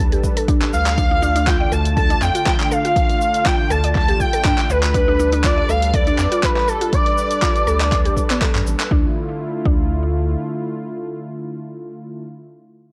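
An expressive portamento lead sits up front, its smooth sawtooth-and-triangle tone gliding with vibrato through ensemble chorus, cassette-tape colour and tape echo from 0.7 to 8.4 seconds. This excerpt of driving afro house moves in 4/4 with a light swing on the sixteenths, built over a drop that runs to 8.9 seconds as Gadd9/D and Dm chords alternate. A punchy, layered electronic kick anchors the groove alongside a deep house kit of handclaps, hi-hat and shaker, while a round, dark analog bass pumps against the sidechain. A woody, mallet-like FM pluck spins detuned arpeggios through chorus and tape echo, and a soft-attack sawtooth pad holds sustained chords under chorus and sidechain pumping. The pad alone carries on after the other parts drop away, ending at 12.2 seconds, and the whole has the light reverb and hazy character of a home recording on cassette.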